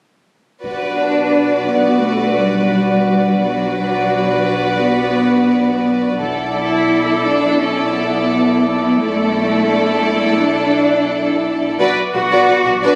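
Opening at 0.6 s with two violin sections, violas, glass harmonica, double basses and taiko ensemble, this ominous, eerie suspense film-score excerpt in B minor at 86 BPM builds on an up-front, smooth-topped cello section from 1.0 s, a deep rumbling drone in the background, glassy ethereal harmonica chords, a rich vibrato violin melody over a clear second violin line, expressive portamento violas, lush bowed basses, a very quiet metallic vibraphone ringing under hard mallets from 1.7 s to 6.2 s, and close, dry heavy-stick taiko hits in the background returning at 6.2 s and 11.8 s, all set in a moderate scoring-stage reverb with a compressed, phone-in-the-room sound.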